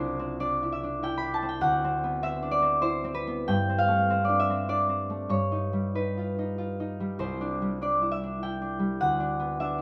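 A concert harp sits up front in this solo classical piece, its fingerpicked strings ringing with an acoustic, warm tone across a range from C2 to B5. The mood is peaceful and graceful, moving in 3/4 at a rubato pace that drifts between 90 and 104 BPM in C major, tuned to A4 = 441 Hz. The harmony is lush, passing from Cadd9 to D13, then G9sus4 and Gaug7 before returning to Cadd9 at 7.2 seconds and D13 at 9.0 seconds. Close, detailed microphones catch the harp's fine detail, while a moderate stone room reverb with a 1.2-second decay adds a gentle halo around each note. The 9.8-second passage is cut from a longer piece and holds a single unhurried section throughout.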